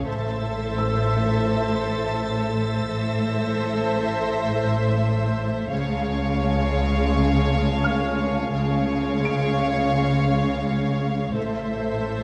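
A focused, smooth-topped cello section anchors this uneasy, mysterious suspense cue, with an expressive double bass section beneath it, lush violas in the middle, and a close, even violin melody above a second violin line bowed with soft attack and portamento. A high, rich violin texture enters at 0.1 s and a mellow, felt-muted upright piano sits intimately in the background from 0.8 s, and both drop out shortly before the end. The harmony moves from Am to C# at 5.7 s and back to Am, set in a wet scoring-stage reverb, in this cinematic passage cut from a longer piece.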